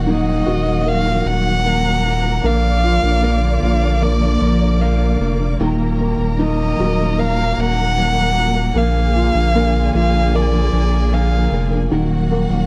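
A straight 4/4 pulse at 76 BPM carries this short pop passage, cut from a longer piece, with a heartbroken, emotional mood in E-flat harmonic minor. The harmony moves between Ebmadd9 and Bb. A saturated, thick sub bass sits up front with a deep, sine-like tone and a fast attack. Above it, a felt-muted upright piano plays soft, intimate accompaniment, and a full-bodied, fingerpicked nylon-string guitar adds classical arpeggios in the background. A warm symphonic string section holds lush, bowed chords with vibrato behind them, while a distant studio violin section traces a rich second line. The lead melody belongs to a single dark violin, nasal and boxy, played up front with expressive vibrato and portamento from 0.1 to 11.7 seconds, all captured in a dry, close 1970s-style studio sound.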